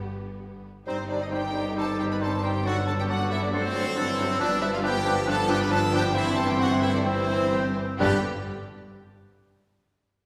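Graceful and lively, this quick classical-period movement for symphony orchestra in G major moves at 135 BPM with a flexible, rubato pulse, heard from further back in a reverberant scoring-stage space. A lush, focused violin section carries the melody over a softer second violin line with portamento, a very quiet viola accompaniment, and smooth, even cello and double bass sections holding the bass. At 0.9 seconds the winds and brass arrive: roomy clarinet and oboe lines, a mellow bassoon, dark sustained horn chords and bright trumpet stabs, with a pure, straight-toned concert flute joining at 1.8 seconds.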